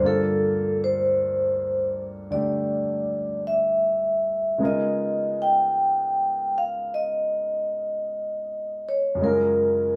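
A vibraphone played with soft mallets carries the melody up front, its mellow, ringing tone touched with a medium motor vibrato and an airy, metallic shimmer. Beneath it, a clear concert grand piano supplies the accompaniment, natural in color with a deep bass reaching well below the vibraphone's line. This is an intimate, late-night jazz ballad in 4/4 with a swing feel on the eighth notes, the two players sounding together in one room throughout the 10 seconds. The harmony moves from Gm9 to Db13 at 4.6 seconds and settles on Gbmaj9 at 9.2 seconds. A wet studio reverb gives the performance a soft halo, and the passage is cut from a longer piece.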